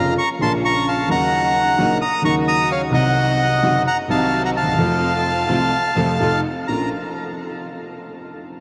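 Melancholic and passionate, this short tango fragment moves with a loose rubato feel, its reedy, mid-forward bandoneon carrying the melody up front through a diffuse ambient delay over a warm grand piano accompaniment with short sustain and a lush chorus. Dark, bowed chamber strings play soft-attack stabs sul tasto with vibrato and a smooth top, sitting in the background. A huge reverb with an 8.4-second tail soaks the mix in a dreamy haze as the harmony passes from Bbm through Ebm7, Cdim, F and F7 back to Bbm.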